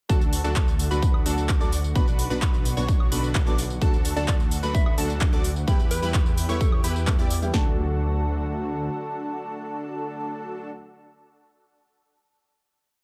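A straight four-on-the-floor kick at 129 BPM drives this uplifting, triumphant festival progressive house drop in D major, joined by a punchy snare, crisp hats, handclaps, tambourine and woodblock from a tape-warm, up-front big-room electronic kit that stops around 7.5 seconds. A thick detuned saw bass, full-bodied supersaw stabs in dotted-rhythm chords, a catchy plucky unison lead doubling the chords an octave higher, a dark baby grand piano and an airy background pad all pulse with sidechain pumping, while dub echo trails the piano, stabs and pluck. From 4.2 seconds a round, keys-like struck synth lead adds gentle phrases coloured by chorus and tremolo, and the piece closes on a final D chord in a dry sound.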